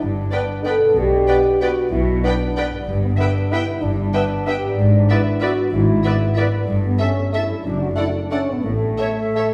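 A mellow French horn section stands up front with sustained chords over a dark double bass section and a rich cello section, while a ringing, thumb-plucked concert harp adds arpeggios in the background of this festive, elegant classical excerpt in 3/4 at 188 BPM, played with rubato and uneven beats. From 0.3 seconds a clear violin section carries the melody sul tasto, joined by a very quiet airy flute, a clear clarinet and a warm second violin section on second lines, with a dark viola section and a bassoon filling in the accompaniment. The ensemble is heard from further back in a recital hall whose reverb is wet, with a decay of 1.6 seconds.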